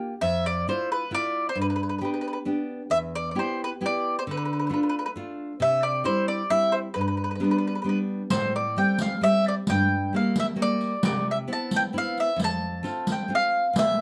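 A fingerpicked nylon-string guitar with fresh strings and audible finger squeak opens this sunny, lively Italian folk serenade in C major at 133 BPM in 3/4, playing classical-style accompaniment up front, joined almost at once by an equally close, round-toned mandolin carrying the melody on picked double strings, while a distant riq with bright jingles and soft hands enters at 8.3 s, heard through light reverb and close, detailed microphones.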